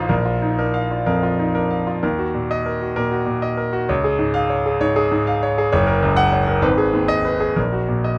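A solo concert grand piano opens this brief cut from a longer classical piece, a virtuoso study with a stormy, passionate mood. The playing moves with an elastic rubato over a steady four-beat metre and spans the keyboard from a deep bass up into the upper middle register. After a short opening passage, a new section begins at 2.0 seconds and carries the music through a darkly shifting minor-key progression to the close at 8.2 seconds. The piano sounds clear and natural, placed up front with a light touch of reverb around it, and it is tuned slightly bright to A4 = 444 Hz.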